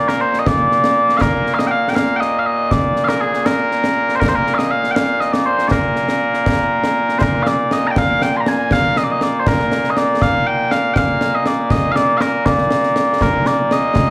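Mellow small bagpipes open the excerpt with a sweet, continuous solo melody, up front in the mix, in stirring, ceremonial Scottish pipe music in 6/8 at 80 BPM in Bb major. Concert snare and bass drums enter at 0.1 s, close and acoustic with dark cymbals, and both pipes and drums carry a slapback echo. Heard live through a club PA with light small-room reverb and club ambience, this fragment of a longer piece moves into a new section at 7.2 s.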